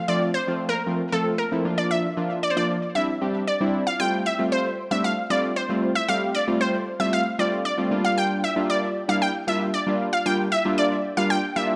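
A pop excerpt in F major at 115 BPM in a straight 4/4, upbeat and carefree in mood. A unison pluck carries the melody between A4 and G5 from the start, its bright, punchy, detuned sawtooth tone sweetened with tape echo. From 0.1 seconds, analog keys fill in the accompaniment between F3 and G4, round and airy with a warbling, vintage chorus. The chords move through F, Bb and Cadd9 before a build-up begins at 4.0 seconds, shifting to Fadd9 and then Bb6 at 7.9 seconds. A lush hall reverb surrounds the dark, warm production, and the passage is cut from a longer piece.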